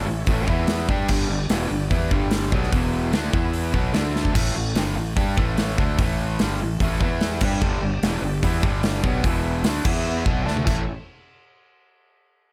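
A straight 4/4 groove at 147 BPM drives this gritty, raunchy blues rock and southern rock excerpt in A mixolydian, with a big acoustic drum kit of punchy kick, medium-tuned snare and bright cymbals up front, entering at 0.3 seconds and breaking into fills at 4.2 and 10.5 seconds. A bright, double-tracked distorted guitar riff sits up front beside a growly fuzz bass, while an overdriven tonewheel organ with key click and slow rotary speaker holds thick sustained chords in the background, dropping out between 4.3 and 7.3 seconds. Power-chord changes cycle around E5, G5, D5 and B5 in a light studio reverb before the band halts at 10.9 seconds.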